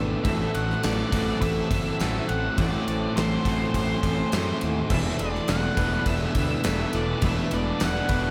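A dreamy, reverb-soaked shoegaze and dream pop excerpt at 103 BPM, where a punchy, gated drum kit with bright cymbals sits up front over a round, overdriven fingered bass, a thick background fuzz guitar riff, a scooped, clean direct electric guitar riff with reverse reverb, shimmering twelve-string acoustic arpeggios with chorus and diffuse delay, a very quiet sawtooth pad sustaining Am6 and E7sus4, a faint jingly tambourine, and a dark octave-fuzz lead melody entering at 0.2 seconds, all in a wistful, blissful mood.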